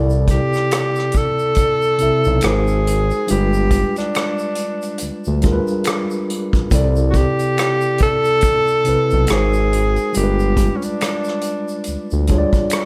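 Relaxed, warm neo-soul R&B in a slow 4/4 with a lightly swung sixteenth-note feel, cut from a longer piece and built on a recurring cycle of lush extended chords. A breathy tenor saxophone carries the melody from 0.3 seconds, up front and jazz-styled, with scooped notes, light vibrato and a punchy attack softened by a smooth top. Underneath, a mellow tine electric piano supplies clean accompaniment through its built-in speakers, while a smooth synth bass blends detuned sawtooth and square waves into a saturated, evolving low end with a fast attack, sustained notes and vibrato. An unplugged acoustic drum kit played with bundle sticks sits distant and roomy, marking time with hi-hat, a tight kick and rim clicks. A tube shaker, finger snaps and group handclaps stay in the background in a large room, and studio reverb gives the mix a soft, spacious glow.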